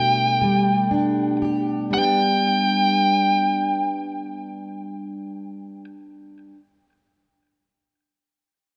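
A distorted, high-gain lead guitar carries the melody up front, its dark tone touched by tape echo as it sits at G5 and ends at 5.8 seconds. Beneath it, a double-tracked, fingerpicked plugged-in steel-string acoustic guitar supplies full-bodied jumbo accompaniment from B2 to G4 until 6.6 seconds, moving from Gadd9/B to G at 1.9 seconds. This romantic, swaying pop fragment in G major and 6/8 at 38 BPM slows down over its opening 1.9 seconds, set in a lush hall reverb with a dark, warm production, and is cut from a longer piece.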